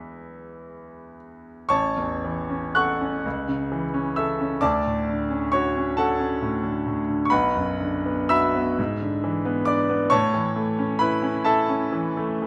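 Set in 6/8 with rubato, this romantic nocturne for solo piano drifts along at a slow pulse of roughly 37 to 46 beats per minute, counted in dotted quarters. Cut from a longer piece, the passage sits in A major and carries a dreamy, tender mood. The lone grand piano has a bright, brilliant tone that sounds natural and up front, spanning from A1 in the bass to F#6 in the treble across its 12.5 seconds. A brief opening phrase rests on an E chord before the music settles into its main statement at 1.7 seconds. The harmony moves gently through A, A/C#, Dmaj7, Bm and E7/G# before coming home to A at 10.1 seconds. A moderate recital hall reverb, about 1.4 seconds long, surrounds the piano with a soft sense of space.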